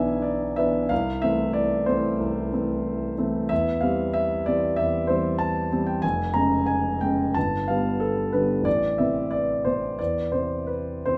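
Lyrical and passionate, this short passage from a longer romantic character piece for solo concert grand piano moves at about 93 BPM in 4/4 with an elastic, rubato pulse, opening in A minor before turning toward C major at 3.5 seconds. The piano sits up front with a warm tone and deep bass, ranging from F1 to Bb5, and the harmony drifts through C/E, a colourful Db/F and G before settling back on A minor at 8.7 seconds. A moderate large-studio reverb gives the playing a natural sense of space.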